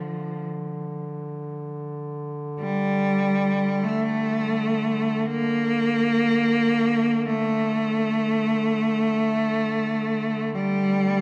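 Set in a wet cathedral reverb with a long 6.7-second decay and a dark production, this solemn, longing Caucasian lament in free time and D minor, cut from a longer piece, sets a clear, smooth bowed cello up front singing an even, vibrato-laden melody between F3 and Bb3 over a mellow duduk holding a low D3 drone with scooped, folk-style notes throughout its 11.2 seconds.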